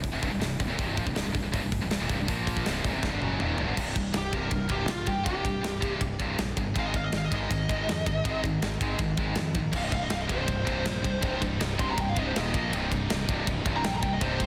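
Heavy metal in C minor at 161 BPM, dark and heavy, with three bright, distorted rhythm guitars sitting in the background (one scooped, one tight, and one double-tracked high-gain part that drops out from 3.8 to 9.7 seconds) over a growly fuzz bass and a tight, up-front acoustic drum kit in a big room. After a drum fill closes the opening riff, a dark high-gain lead guitar with digital delay takes a solo from 4.2 seconds to the end of this cut from a longer piece. The sound is dense and heavily limited, with light reverb and studio ambience.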